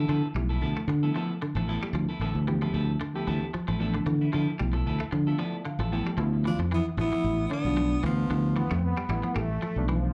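Afrobeat with a driving, hypnotic swing, heard live through a club PA in light reverb, built on a round, up-front fingered bass and two clean semi-hollow guitars, one picking arpeggios with chorus and slapback echo throughout, the other adding echoed stabs until about 6.1 seconds. A reedy, slightly out-of-tune electric piano with light overdrive comps from 0.4 seconds and adds a fill just before the second section. At 6.5 seconds a veiled, whispered bucket-muted trombone takes the melody over a gritty, raspy tenor saxophone line, and a tight, bright trombone section with slapback echo picks up the second line from 8.6 seconds in this fragment of a longer piece.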